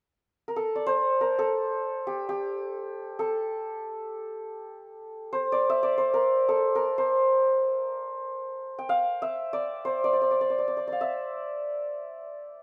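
Lightly reverberant and captured live in a single room, this solemn, introspective fragment of a longer Indian classical piece features a solo acoustic santur, up front from 0.5 seconds to 12.6 seconds, its hammered strings shimmering and ringing between G4 and G5.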